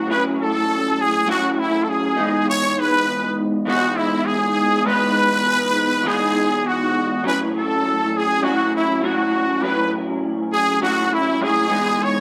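A wet studio reverb surrounds this short indie pop fragment, cut from a longer piece, with a sunny, nostalgic mood at 101 BPM in a straight 4/4. A raspy, growling trumpet sits up front and carries the melody with vibrato and scooped notes, its brilliant tone thickened by ensemble chorus and a slapback echo. Beneath it, a picked electric guitar through a small old amp plays the accompaniment with a slightly broken-up, lo-fi edge and a warbly pitch drift, moving between A6 and Emaj7/G# chords.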